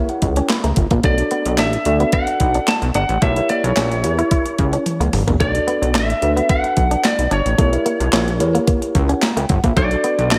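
Early-eighties boogie funk at 110 BPM in B minor, this slick, late-night excerpt opens with a worn, slightly out-of-tune tine electric piano fill over a twangy, chorused clean guitar riff set in the background, before a thumpy, overdriven 12-bit drum machine with handclaps and toms and a glossy pulse-width synth bass arrive up front, a slightly broken-up lead guitar with slapback echo takes the melody from 1.1 seconds, and a drum fill near 4.9 seconds marks the turn between Gdim7 and Bm7, all inside a lush hall reverb with a big arena sound.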